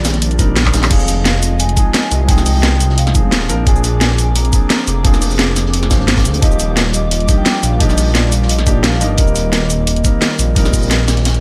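Liquid drum and bass at 174 BPM in F dorian, a lush, soulful passage cut from a longer piece, built on a deep, rumbling detuned saw bass up front and a cracking, bright electronic kit with handclaps, shaker and crash, layered over a knocking kick that enters at 0.4 seconds and a gritty, saturated breakbeat kit tucked in the background with a drum fill at 0.7 seconds. A concert grand piano with dub echo plays accompaniment while an airy, breathy pad holds sustained chords with chorus and sidechain pumping, moving from Cm9 through Fm7, Bb9 and Ebmaj9. From 0.9 seconds a soft-mallet vibraphone carries the melody with a ringing, metallic tone, motor vibrato and tape echo, all set in a small room ambience.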